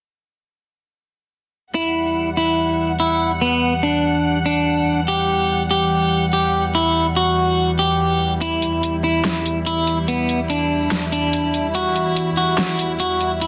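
A clean electric guitar leads this excerpt of heavy wobble dubstep, carrying a picked melody with a trailing delay from 1.7 seconds. Beneath it, a dark studio string section holds sustained, bowed chords with a soft attack and a floating, sul tasto purity, opening on an Emadd9 in E minor. The tempo sits at 144 BPM in 4/4 with a half-time feel, and the mood is aggressive and heavy. At 8.4 seconds an electronic, layered drum kit arrives with a huge snare and bright hi-hats carrying a tape-warm edge. All three parts sit up front in a light reverb, and the master is dense and heavily limited in a modern style.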